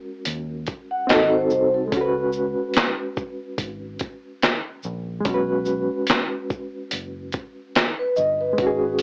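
A swung 72 BPM lo-fi hip hop groove with a gritty, sampler-style drum kit of thumpy kick, fat snare, hi-hat, shaker and handclaps sets a hazy, melancholic mood in this short cut from a longer piece, as a barky, slightly out-of-tune reed electric piano with fast tremolo and cassette wear plays the chords from G#sus2 through G#7b9 and C#7sus4 to Bsus2, a dark, foam-muted fingered electric bass sits low beneath it, and a mellow soft-mallet vibraphone with analog delay rings in briefly at 0.9 seconds and again at 8.0 seconds, all in a small room with an AM-radio, home-cassette sound.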